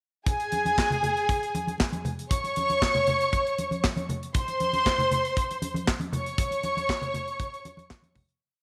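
Glamorous and joyful, this short disco piece is a breakdown from start to finish, with a dark, woody symphonic string section playing lush bowed lines with vibrato, fast runs into held notes, in a distant yet up-front sound. A polished, punchy modern drum kit drives a four-on-the-floor beat with sixteenth-note hi-hats and a snare layered with handclaps, while bright, low-tuned congas add a close, syncopated groove. The whole piece sits in a moderate echo chamber reverb and fades out from 6.4 seconds to its end at 8.4 seconds.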